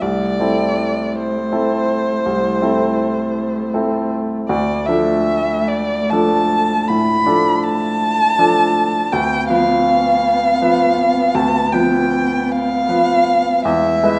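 Moving in a slow, rubato 12/8 at 53 BPM counted in dotted quarters, this short portion of a solemn, yearning romantic movement for piano trio in A minor drifts from Am/C through Dm and Bdim/D to land on E at 13.6 seconds. A rich violin sings the melody up front with vibrato and portamento, while a dark, close cello traces a second line beneath it with the same expressive bowing, and a clear, polished baby grand piano supplies the accompaniment. A recital hall reverb with a 1.5-second decay gives the trio a wet, resonant space.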